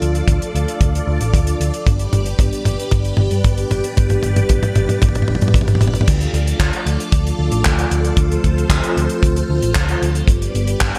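A straight 4/4 italo disco groove, danceable and bittersweet, sets a dry, up-front 70s drum kit with dark cymbals, handclaps, hi-hat, toms, a crash and gated reverb, running a fill through its first 6.1 seconds, beside a tight, rolled-off kick from 0.3 seconds, a round, amped hollow-body electric bass, and a lush vintage string machine holding slow-attack sawtooth chords with ensemble chorus and a moving notch over a Dm-to-G progression.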